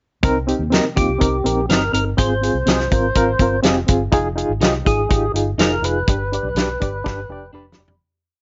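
At 0.2 seconds a barky reed electric piano, a muted fingered bass and a soul drum kit start together, setting up a passionate, driving 1960s-style soul verse in C minor at 123 BPM. The lightly overdriven electric piano sits up front with a fast tremolo, pushing close-voiced chords in eighths. Beneath it, the dark, foam-muted bass plays a round, melodic, syncopated line, while the dry, mid-forward drums lay down a backbeat groove with a fat snare and tight kick. A clean, twangy guitar enters at 0.7 seconds with short picked chops on the backbeat, tucked in the background. Shortly after, a fat, percussive tonewheel organ with slow rotary speaker and vibrato carries the melody in short call phrases over Cm7, Ab6, Fm7 and G. The whole piece fades out from 6.1 seconds, with a drum fill and an electric piano fill closing it out in a light reverb.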